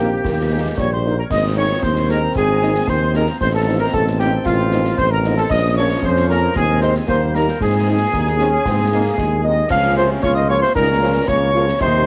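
An up-front, mellow tuba anchors this festive, rousing military-style march for wind band, laying down the bass in Ab major at 114 BPM in a straight 2/4. Above it a solo cornet with a soft, rounded tone carries the melody in classical style, while a pure, wooden-toned piccolo with vibrato and crisp tonguing rides high over the band. A distant, roomy woodwind section with light vibrato plays a tight second line, and a clear euphonium adds its own counter-line in the background at the start, returning at 9.4 seconds. French horns supply background accompaniment until 11.6 seconds, and a brilliant, tight trombone section sustains chords in the background. Concert snare, bass drum and clash cymbals with bright cymbals keep the march pulse from an acoustic, live room. The home cassette recording has light reverb and gives every part but the tuba a vintage tape coloring, with tape echo on the piccolo and woodwinds. 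This is an excerpt cut from a longer piece.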